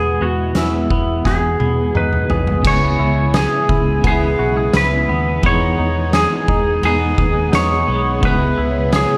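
Dream pop at 86 BPM in 4/4, ethereal and dreamy, this cut from a longer piece drifts between Emaj7 and C#m7 under a roomy studio reverb. An up-front, twangy lap steel carries the slide melody through tape echo, over a bright, compressed electric guitar's arpeggios, a string machine's mellow sawtooth cello chords with ensemble chorus, and a round, foam-muted bass. An oversized, low-tuned drum kit with a fat snare and boomy kick enters at 0.5 s and plays a fill from 1.3 s, and at 2.6 s a second clean guitar with harmonic tremolo and lush chorus joins, soon followed by soft-mallet vibraphone ringing in the background through tape echo and plate reverb.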